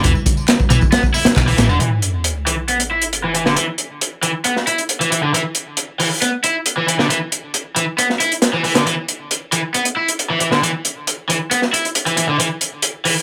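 A bright, overdriven cranked stack guitar riff sits up front throughout, roughened by vintage sampler grit, a low-pass filter and delay, over a punchy, saturated breakbeat kit with a rolled-off top in this swaggering, funky breakbeat excerpt. For the opening 1.8 seconds, a round, dark hollow-body bass, layered electronic tambourine and handclaps, and very quiet congas fill out the groove, with a band accent at 1.4 seconds. A sub drop hits at 1.8 seconds as the bass and hand percussion fall away, leaving guitar and drums to drive on in a small, moderate room.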